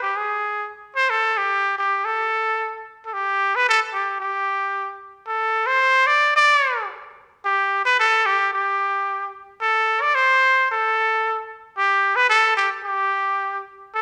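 In a straight two-beat metre, this short, earthy and festive Andean folk passage, cut from a longer piece, features a solo trumpet with a straight mute, placed up front. The muted trumpet sounds nasal and bright, with soft attacks, scooped notes, vibrato and a jazz-inflected phrasing, shifting into a new section at 3.1 seconds. A moderate recital-hall reverb surrounds the line.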